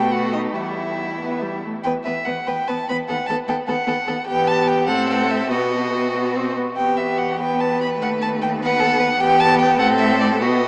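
Stormy and dramatic, this quick classical-period string quartet movement in E minor moves in a rubato 6/8 at roughly 91-102 BPM, cut from a longer piece and shifting at 1.9 seconds into a new section built around E minor and B7/D# harmonies. Up front, a close, smooth first violin sings the high melody with vibrato, while a focused second violin carries a lower line, the viola fills in a warm, bowed accompaniment, and a distant, expressive cello holds the bass with vibrato and portamento. A huge, wet reverb places the quartet in a vast, echoing space, though the overall sound comes across as if through a small speaker.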